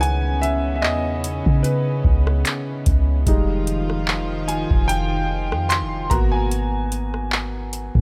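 A small room ambience frames this late-night, longing contemporary R&B excerpt in F minor at 74 BPM, with a gentle 16th-note swing under chords moving from Dbm9 to Fm9 at 3.3 seconds and Abm9 at 6.1 seconds. A clear, worn baby grand piano with long sustain carries the solo up front across the full 8 seconds, over a soft, round 808-style bass and a booming analog drum machine with a deep kick, metallic hi-hats, handclaps and rim clicks. Behind them, a floating, distant studio string section holds bowed sul tasto chords until 6.5 seconds.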